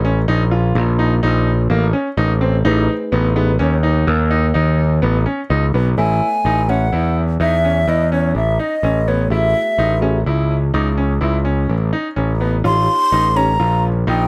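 A dry, close-sounding mix opens this driving, bright progressive instrumental, cut from a longer piece and moving at 126 BPM in 7/4 with a straight feel in A lydian. A growly, overdriven picked electric bass sits up front from the start, holding the low end while a brilliant baby grand piano spins delayed arpeggios with long sustain and audible action noise. At 2.6 seconds a worn, slightly out-of-tune tine electric piano joins with lightly overdriven accompaniment that sounds as if heard through its built-in speakers. At 6.0 seconds the harmony settles onto A and an airy baroque flute steps forward with the melody, its wooden, straight tone, crisp attack and lifted highs cutting through clearly. Chords shift above an A root, passing through G#m/A, F#m7/A and D#7/A, giving the passage a restless, suspended lift.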